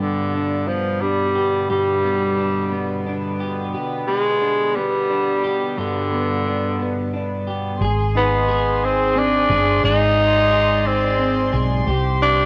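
A breathy, raspy tenor saxophone with tape echo carries the melody of this dramatic, melancholic six-eight pop ballad at 59 BPM, over a twangy, slightly broken-up double-tracked electric guitar and a smooth, gut-toned studio string section holding sustained chords through G, Ab and C minor, while a dark, round fretless electric bass enters at 7.8 seconds, all within the intimacy of a home cassette recording in a moderate room.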